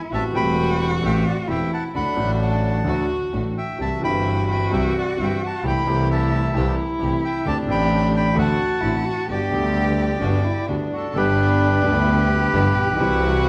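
Tango excerpt in G major at 131 BPM with a rubato, nostalgic elegance, where a reedy, bright bandoneon carries the melody up front over a clear concert grand piano with deep bass and long sustain, a distant bowed double bass, an expressive cello with portamento on the second line, and very quiet, biting string stabs, all set in a recital hall reverb as the chords move from Am7 through D7sus4 to Gmaj7 before settling on G at 11.1 seconds.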